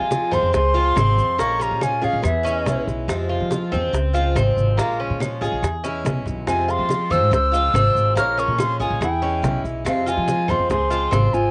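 An airy, reedy concert flute leads this danceable Cuban son and guajira piece in F minor at 142 BPM, joined by a fingerpicked flamenco guitar with audible finger squeak in the background, while a bright, boxy swing-style acoustic guitar, a metallic double-strung Cuban tres playing arpeggios, a dark, thumpy upright bass up front, tight high-tuned bongos, saturated low-tuned congas, woody claves and grainy maracas carry the groove; the flute and flamenco guitar drop out at 2.8 seconds and return at 6.5 seconds just after a brief drum fill, with light reverb and the muffled top end of a home cassette recording.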